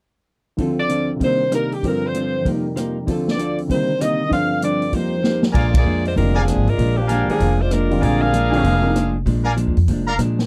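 A dry, close studio sound in a 1970s style frames this swinging, energetic big band jazz excerpt at 194 BPM in 4/4, with a swing feel on the eighth notes in B-flat major. A natural-sounding drum kit sits up front with a boomy kick, medium-tuned snare, ride, hi-hat, rim clicks and crashes, and a dark, clean hollow-body electric guitar and a warm grand piano comp beneath a clear, present saxophone section that carries the melody with vibrato from 0.8 seconds. The opening stretch cycles through minor-seventh and suspended chords before a drum fill leads into a new section at 5.5 seconds, where the harmony lands on Bb7. There a woody pizzicato upright bass joins up front, and a bright trumpet section adds distant, roomy stabs with light vibrato, marked by a band accent just after the change. The piano drops out before the end while guitar, drums, bass and trumpets carry on, as the passage is cut from a longer piece.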